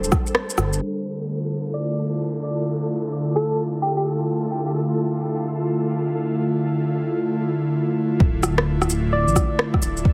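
A swung 4/4 groove at 130 BPM sets this melancholic, nocturnal future garage fragment in D minor, with a deep, up-front electronic kick and a layered rack of shaker, rim click and cabasa, the latter kept dull by low-pass filtering. The percussion rack and the dark, detuned sawtooth bass, rumbling and beating, sound briefly at the top and fall away at 0.8 s. The bass returns with the kick near 8.2 s and the percussion follows at 8.4 s to carry the closing stretch. An airy, breathy pad holds sustained chords throughout, its mellow detuned layers pumping against the sidechain and shimmering with chorus as the harmony moves from Gsus24 to Dm9 and settles on Dmadd9. In the background, a flickering, grainy granular texture hangs on a single note from the opening until 8.2 s under a filter sweep, while a very faint electronic downlifter passes beneath it. From 1.7 s a round, gentle, keys-like FM lead adds a brief phrase with vibrato, phaser and tape echo, then reappears for a moment near the end. 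The whole excerpt has a heavily compressed, low-passed radio character in a light reverb.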